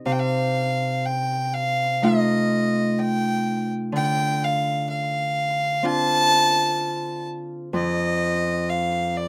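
Celtic slow air at 63 BPM in a rubato 4/4, tuned to A4 = 437 Hz, haunting and longing, where a single rich, nasal, earthy fiddle with light vibrato and an airy bow carries the high melody up front from 0.1 seconds over a bright, ringing, fingerpicked acoustic Celtic harp accompaniment moving through F7/C, Dm7 and F5, all in a rough home demo mix with light reverb, cut from a longer piece.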